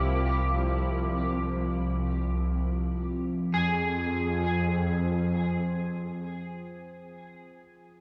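A bowed double bass section sits up front with a clear, biting and lush ensemble tone, its vibrato carrying through a huge, wet reverb in this serene, reflective ambient fragment cut from a longer piece. Beside it an evolving analog drone of sawtooth and pulse-wave tones, with pulse-width modulation, chorus and phaser, swells in slowly and sustains, while a twangy, slightly broken-up electric guitar picks quiet arpeggios through analog chorus and diffuse delay. The harmony shifts at 3.5 seconds, and the bass drops away at 6.2 seconds as the drone and guitar ring on to 6.6 seconds.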